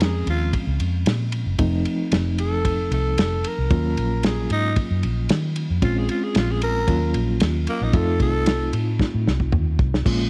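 Brooding and smoky, this straight-eighth soul blues excerpt features a raspy, growling tenor saxophone soloing over a reedy electric piano with fast tremolo, a round, foam-muted electric bass up front, and a dry, muffled drum kit with dark cymbals that plays a fill from 9.0 seconds, all set in a small room over a Bbm7, F7 and Ebm7 progression.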